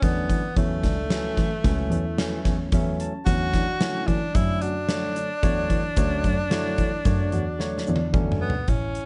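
Progressive instrumental band music in 5/4 at 111 BPM, intricate and brooding, where a bright solo tenor saxophone carries the melody with vibrato over a barky tine electric piano that adds a fill from 2.2 to 3.3 seconds, mellow grand piano arpeggios in the background, a clear bowed double bass, a punchy gated 80s drum kit up front with a fat snare and a fill near the end, and a grainy, very quiet egg shaker from 3.3 to 8.3 seconds, all moving through Bm7/E, F#m7 and Dmaj9 in a dark production with light reverb.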